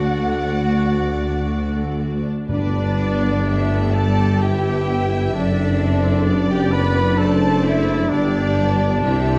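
In an unhurried triple metre with a freely breathing rubato, this slow romantic movement for symphony orchestra unfolds in a serene, lyrical mood, a brief passage cut from a longer piece. A lush, focused violin section carries the melody with singing vibrato, while a second, woody violin section, a very quiet dark clarinet with a smooth top and a soft-edged, airy flute ensemble weave supporting lines around it. Beneath them, a distant, even viola section provides accompaniment, a dark French horn section holds sustained chords, and a clear, close-miked trumpet section adds stabs. The low end is anchored by a close, bowed cello section, a smooth double bass section and a mellow tuba. Very quiet timpani, dry and close, sound only from 2.5 to 3.9 seconds as the harmony settles from D to G. The whole orchestra sits in a generous scoring-stage reverb, giving the production a dark, warm glow.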